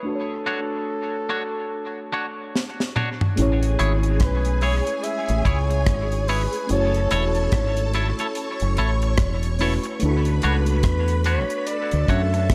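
A close-miked flugelhorn with light vibrato and tape echo carries the sweet, tender melody of this lovers rock reggae excerpt at 72 BPM, over a soft, warbling FM electric piano with chorus and dub echo and twangy, clean guitar stabs soaked in spring reverb, until the dry, up-front drum kit with its high-tuned snare arrives with a fill at 2.6 s, and at 3.4 s a round, dark fingered bass and a lush, phased string machine join as the music settles into A major.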